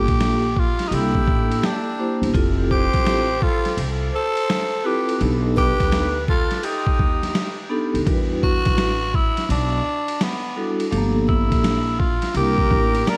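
A dreamy mix soaked in reverb and vinyl crackle sets a smoky, cool mood for this jazz-hop cut at 84 BPM in 4/4, swung on the sixteenths and centred on E phrygian. An up-front boom bap kit, compressed, pitched down and gritty, knocks out a thumpy kick, medium-tuned snare, hi-hat and ride, its tape-coloured samples re-recorded in a small room. Beneath it, a woody, dark upright bass plucks growly low notes, while a vibraphone struck with medium mallets rings out metallic chords with slow motor vibrato through changes such as Gm7, C13, Fmaj9 and B7alt. The raspy, growling tenor saxophone carries the lead up front with a soft attack, trailed by a diffuse ambient delay. A breathy, reedy flute, close-miked with a straight tone, adds a quieter second line from 0.9 to 7.7 seconds and returns at 12.4 seconds, its own delay blurring into the haze.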